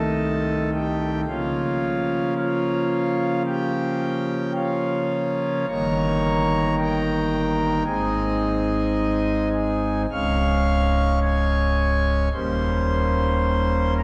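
A solo pipe organ on warm, thick foundation stops, voiced in a romantic manner and placed up front, plays a serene, reverent chorale-style classical piece at a slow, rubato 55 BPM in 4/4, tuned to A4 = 441 Hz, spanning Db1 to F6 as chords move from Adim/C through Bbm/Db and Eb7/G to Ab, Db and Eb7, all wrapped in a wet church reverb with a 3.3-second decay within a dark, warm production in this 14-second section cut from a longer piece.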